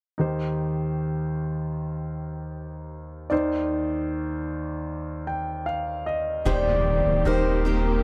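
A straight 4/4 pulse at 76 BPM carries this hopeful, emotional pop excerpt in Eb major, opening on an up-front concert grand piano alone, its clear, intimate tone revealing audible action noise and long sustain as it moves between Eb6 and Cmadd9/Eb and adds a fill from 4.9 to 6.5 seconds. At 6.5 seconds the arrangement blooms: a round, horn-like synth lead with chorus and vibrato takes the melody, a deep, saturated sine sub bass sits up front, a picked jumbo steel-string acoustic guitar adds bright arpeggios with finger squeak, and a studio string section with portamento holds smooth sustained chords in the background. A very quiet electronic impact sounds from that arrival onward, all captured in a dry, close 1970s-style studio sound.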